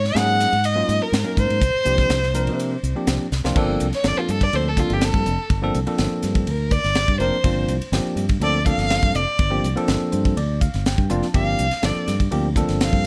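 A rich, expressive violin with vibrato, portamento and a slapback echo opens this funky, nocturnal electric jazz fusion excerpt, up front over punchy fingered electric bass, a crisp, airy drum kit with a high-tuned snare and tight kick, and bell-like, bright tine electric piano accompaniment in a small room. After a drum fill at 3.3 seconds, the violin takes a bowed solo from 3.6 seconds over suspended and minor eleventh harmonies. The electric piano adds a clean fill from 9.9 seconds.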